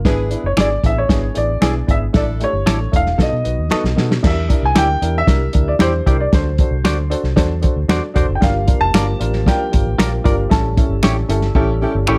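A straight 4/4 pulse at 115 BPM drives this urgent, passionate clip of uptempo 1960s-style soul, cut from a longer piece, with a dry, muffled soul drum kit up front alongside finger snaps and a round, punchy foam-muted electric bass. A dark, worn upright piano with audible action noise and a slightly detuned, woody tone plays the accompaniment, while a natural baby grand piano carries the melody and a clean, compressed semi-hollow guitar adds stabs from 0.6 seconds. A tight, bright saxophone section plays a second line at the start and returns near the end, and a fat, lightly overdriven tonewheel organ with slow rotary and chorus vibrato slips in very quietly on sustained chords from 8.4 seconds. The harmony moves from E7 through Asus4 and B7 into Em7b5, D7, Gm7 and A7, with drum fills and a closing band accent pushing toward the cut. Light reverb frames a dark, warm production.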